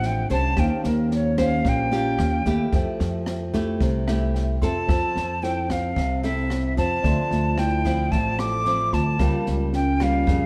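Sunny and romantic, this bossa nova excerpt at 111 BPM in F major features an airy, tongued silver concert flute up front, playing with vibrato in a slightly unsteady manner. A fingerpicked nylon-string guitar, a growly, woody upright bass and an open jazz kit with a boomy kick and rim clicks accompany it, while a clean, bright tine electric piano comps in the background and adds a fill at 3.8 seconds. From 4.6 seconds a mellow, hollow alto flute joins in the background with a straight-toned second line, and a moderate echo-chamber reverb places the ensemble slightly back in the room.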